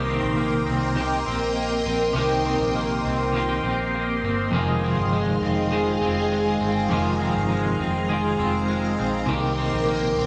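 This is a melancholic, ethereal dream pop piece in a straight 4/4 feel, cut from a longer work and moving from Cm7 to Fm7 and back to Cm7. A phased string machine sits up front with swirling, warbling sustained chords, its bright sawtooth tone given a slow attack and thickened by ensemble chorus and phaser. Beside it, an electric guitar at the edge of break-up picks twangy arpeggios, slightly broken-up and forward in the mix, colored by analog chorus and tape echo. A clean, compressed electric guitar plays picked accompaniment underneath, shimmering with tremolo and lush chorus. A vintage muted fingered electric bass anchors the low end with a dark, round, punchy, foam-muted tone, and all four parts play together from 0.0 to 10.3 seconds. The recording has a dry, gritty hardware character with transformer saturation and a light touch of small-room reverb.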